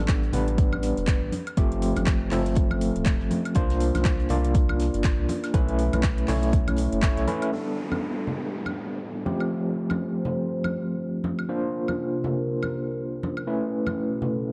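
A swung groove opens this deep, moody deep house fragment: a deep, overdriven electronic kick, a gritty deep house kit of handclaps, metallic hats and woodblock, very quiet dry hi-hat and fat snare from a damped 70s kit, and ringing, low-tuned congas played with soft hands, all over a round sine sub bass that pumps with the sidechain. Up front, bright, barky overdriven tine electric piano stabs through a combo amp with tremolo and analog delay, moving through suspended ninth chords. The kick, sub bass and 70s kit drop out between 7.1 and 7.4 s; a downlifter falls from 7.5 s, and from 8.2 s a dark, detuned sawtooth pad with a slow attack, chorus and phaser fills the dim, lightly reverberant mix.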